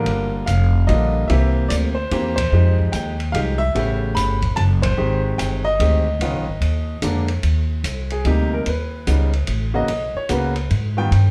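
A clear, intimate baby grand piano with audible action noise carries the melody and takes a solo from 7.4 s in this sophisticated, playful jazz piano trio excerpt in C minor at 147 BPM in swung 3/4, backed up front by a woody, thumpy pizzicato upright bass and, lower in the mix, an open jazz drum kit of hi-hat, boomy kick and dark ride cymbal, with band accents at 2.3 and 4.8 s and a moderate studio reverb that places the trio further back in the room.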